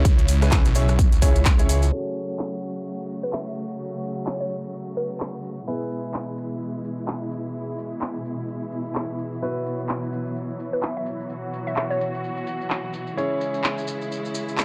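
Bass house at 128 BPM in F# minor with a swung, bouncy and gritty feel, opening on a drop where a thick, swirling phased saw bass plays up front until 1.9 s and a punchy kick hits up front until 1.6 s, after which a tape-warm garage kit with claps, hi-hat, rim clicks and crash, grainy maracas, lush distant pumping strings, and clear, intimate baby grand stabs under a sweeping filter and dub echo carry on, joined by a very quiet downlifter from 2.7 s and a hollow chorused square pluck melody from 3.2 s over chords moving from C#m through F#m, E and Bsus4.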